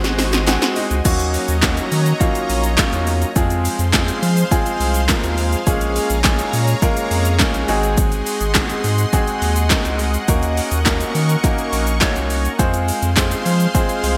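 A bright, 1980s-style digital sheen and a lush hall reverb frame this driving, confident dance-pop passage, cut from a longer piece. A brief build-up with a drum fill and a grand piano flourish gives way to the drop at 1.1 seconds, where the deep house kit takes the front, layered and overdriven, with a deep kick, punchy snare, metallic hats, claps, shaker and crash, all touched by gated reverb. A thick, saturated sub bass with a fast attack sits up front beneath it. A clear, intimate baby grand, its action noise audible, plays the accompaniment over a detuned supersaw pad that holds slow-blooming sustained chords moving through Ebm7, Fm, Bbm7 and Ab7. Piano, pad and bass all pump with sidechain compression, while a crisp, compressed group handclap lingers barely audible in the background, and the piano adds another short fill at 13.7 seconds.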